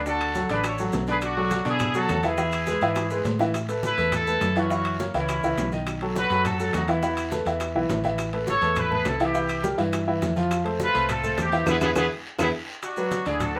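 A salsa groove at 207 BPM carries this festive, danceable passage from a longer piece, where a punchy, bright trumpet section with light vibrato leads up front over a clear concert grand piano and a dark, round hollow-body electric bass, while ringing congas, low-tuned bongos, metal-shell timbales, woody claves, a raspy guiro and grainy maracas sit in the background of a live studio room, with drum fills at 3.0 and 12.0 seconds and a band accent at 11.7 seconds.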